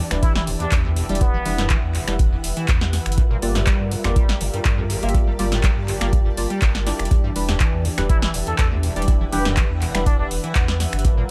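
A sawtooth pad with a soft attack, a squelchy, resonant acid bass, a round sine sub bass and a blurred granular cloud pad, which hangs in the background with its own reverb and a long release, open this raw, hypnotic acid house cut together. Moving at 122 BPM in a straight 4/4 in E minor, the harmony shifts from Em7 to Gm7 at 3.2 seconds and back to Em7 at 7.1 seconds. A deep electronic kick sits loudest in the mix beside an analog drum machine of finger snaps, handclaps, metallic hi-hats and a punchy snare, with a short room on the snare, claps and hats, while dark, detuned chord stabs with ring modulation and a moving notch decay under chorus and analog delay. The acid riff carries overdrive, lush chorus and analog delay behind its filter sweep, and the pads and sub bass pump against sidechain compression, with the chordal pad also roughened by vintage 12-bit sampler grit. A jazz-style trumpet with a plunger mute plays scooped, wah-wah phrases through tape echo, first briefly near the start and again from 8.1 to 10.3 seconds. 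The dry mix has little reverb, and the passage is cut from a longer piece.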